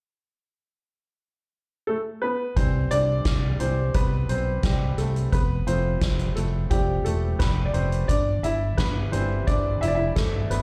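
A clear, woody upright piano with plate reverb and slapback echo opens this hopeful, anthemic piano-driven pop excerpt at 1.9 seconds, then takes a solo from 2.6 seconds as a round, punchy fingered electric bass and an up-front soft-mallet drum kit with a boomy kick and medium-tuned snare join over C, F and Em/G chords at 87 BPM in C major, all heard as a live gig through the venue's PA with club reverb.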